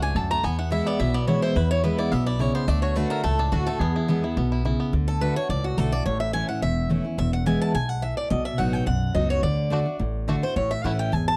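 A full-bodied, jumbo steel-string acoustic guitar takes the solo up front throughout this driving, virtuosic bluegrass excerpt at 213 BPM in E mixolydian. A bright, boxy swing-style picked guitar carries a melody with audible finger squeak, while a twangy, percussive fingerpicked banjo plays melody until 4.9 seconds and returns at 9.7 seconds. Underneath, a woody, thumpy pizzicato upright bass anchors a dry, close 1970s-style studio sound.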